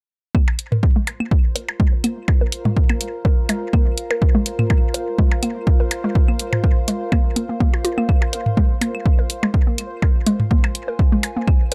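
Minimal techno at 124 BPM with a hypnotic, clinical mood, built on a punchy, overdriven kick and up-front hi-hat, overdriven electronic claves, blips and toms touched with digital delay, a hollow, bouncy square pluck riff carrying chorus, tape echo and sidechain pumping under a filter sweep, a bright bubbling stepped-filter texture in the background, and a warbling, nostalgic lo-fi pad with phaser that joins at 1.7 seconds, all in a dark production with light reverb.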